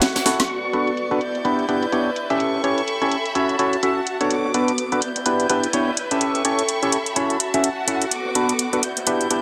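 A hollow, nasal organ stab with chorus and tape echo sits up front in this energetic, bittersweet piano house excerpt in B minor at 126 BPM, its riff riding a swung sixteenth-note groove over a Bm7, Em7, A7, F#m7 cycle. The excerpt opens with a short drum fill from 0.1 to 0.5 seconds, and a layered electronic house kit with a cracking snare and filtered metallic hats drives the groove, while a very quiet acoustic brush kit with a high-tuned snare adds natural texture underneath. Dark, bowed violins hold soft-attack chords beside a veiled, con sordino string section, all set in a moderate plate reverb.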